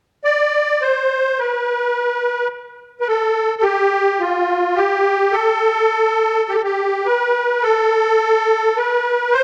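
A solo musette accordion enters at 0.2 s, its reedy, shimmering voice placed up front and mid-forward in the mix. This short excerpt from a longer Arabic piece moves at 106 BPM in 10/8 with a straight feel, and its mood is hypnotic and melancholic. The accordion's wet musette tuning gives each tone a trembling richness as the line stays within a compact middle range. The music passes through three brief sections, shifting at 1.9 s and again at 7.6 s before the accordion stops at 9.4 s. A moderate recital-hall reverb surrounds the instrument, and the overall production is dark and warm.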